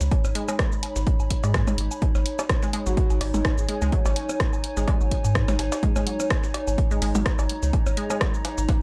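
Minimal techno at 126 BPM in G# minor, sparse and quirky, this swung excerpt rides a punchy, up-front electronic kick and a round, deep analog bass pumping under sidechain, with a tape-warm drum machine playing cabasa, hi-hat and rim click, gritty sampler-style hats and snare set back in the mix, delayed woodblock, blips and cowbell, a squelchy resonant pluck riff, a warbling lo-fi pad with phaser and chorus, and a breathy flute-like lead that surfaces briefly from 2.9 to 4.2 seconds over a G#sus4, all in a dark production with light reverb.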